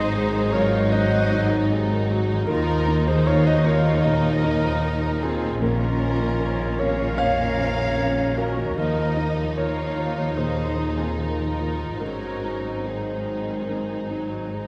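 Cinematic, emotional film score for orchestra, sorrowful and bittersweet, moving with an uneven, rubato pulse in this short passage cut from a longer piece. A close violin section carries the melody in a narrow low range, bowed smoothly with light vibrato, while a second, distant violin section sings a lush line above it with expressive portamento. A clear solo clarinet and an airy flute section add their own second lines in the background. A dark, mellow baby grand piano, a very quiet rich viola section and a very quiet, tight French horn section supply accompaniment and sustained chords, as a ringing concert harp plays fingerpicked arpeggios. Cello and double bass sections anchor the bass with vibrato and sliding portamento, the basses soft in attack, all set in a moderate scoring stage reverb over a harmony that moves from Ab7 through Ebsus2 and Bbmadd9 before returning to Ab7 at 12.0 seconds.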